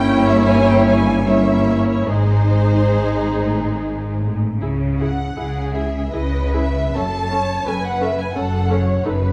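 Set in a moderate recital-hall reverb with a dark, warm production, this short passage from a longer piece is a slow romantic movement for string orchestra in 3/4, shaped with a yearning, elegiac rubato. The first violins carry the lush, expressive melody from a slightly distant position, while the second violins add a woody, soft-attacked second line beneath them. The violas supply a focused, smooth-topped accompaniment, and the cellos sit close and full on the bass alongside the double basses, whose bowed lines glide with portamento. All five sections play with vibrato throughout. The harmony moves from Gdim7 to G#, then at 4.6 seconds a second section turns to C#m and F#m before the strings come to an end by 9.3 seconds.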